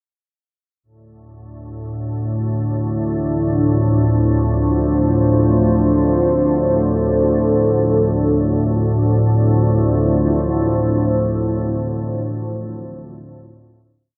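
Desolate and unsettling, this complete dark ambient drone in D minor drifts in free time as a low, detuned organ-like drone with ensemble chorus enters at 1.6 seconds, joined at 2.6 seconds by a deep, warbling, vintage pad with chorus holding slowly shifting chords from Dmadd9 to F/D and back, both bathed in a vast cathedral reverb until the final chord settles at 8.4 seconds.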